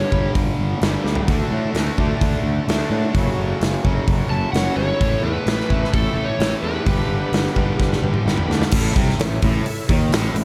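A dry recording of a gritty, driving blues rock and southern rock power-trio groove at 129 BPM in A mixolydian, cut from a longer piece. A bright, double-tracked picked guitar riff with spring reverb and a growly fuzz bass sit under a punchy, up-front big-room drum kit, while a thick tonewheel organ holds very quiet sustained chords through a slow rotary speaker from 1.3 seconds. After a brief flash at the opening, a warm overdriven slide guitar with slapback echo carries the melody from 4.3 seconds, shadowed by a dark picked lead line in the background, and the drums and organ both fill at 7.8 seconds before the chords settle on A.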